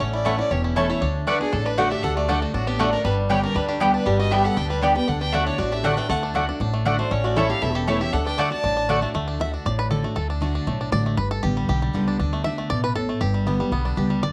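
A straight 4/4 pulse at a brisk 236 BPM drives this lively, joyful bluegrass passage in D major, cut from a longer piece, with a woody, growly upright bass played pizzicato and a full-bodied jumbo acoustic guitar picking the accompaniment. Up top, a bright, twangy banjo and a rich, distant fiddle with light vibrato carry the melody, while a double-strung mandolin adds stabs and a nasal, metallic lap resonator guitar plays a second line with slide. The fiddle, mandolin and resonator drop out at 9.0 seconds, leaving the percussive five-string banjo to solo from 9.1 seconds over bass and guitar, all set in a small room with moderate echo-chamber reverb.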